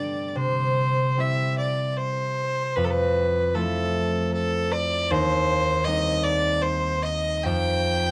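A solo fiddle and a concert harp begin together in this short excerpt of a Celtic slow air, tender and nostalgic in mood. The bowed fiddle carries the melody between A4 and G5 with a biting, nasal, earthy tone and light vibrato, sitting up front. The fingerpicked harp accompanies from Eb2 to E4 with a ringing acoustic sound, also up front. The pulse is a loose 3/4 at around 76 BPM, played rubato with uneven beats, and the tuning sits slightly above standard pitch at A4 = 441 Hz. The harmony moves from C through Fmaj7 at 2.8 seconds and Eb6 at 5.1 seconds before settling on Fsus2 near the end. The sound is that of a dry, close 1970s-style studio recording with light reverb.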